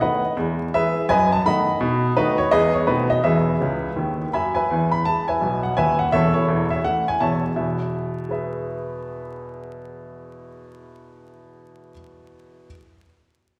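A clear, woody upright piano opens this short stride jazz cut, playing solo at a brisk 167 BPM in 4/4 with a swinging, playful lilt in E major, moving through E, B7 and B7b9 changes across a span from D#1 to B5. The piano sits up front with an intimate, natural tone and audible action noise, and it drops in a fill between 3.6 and 4.7 seconds before shifting through A/E and settling back on E at 7.6 seconds. A wet recital hall reverb surrounds the playing, and a layer of vinyl crackle gives the sound an aged patina.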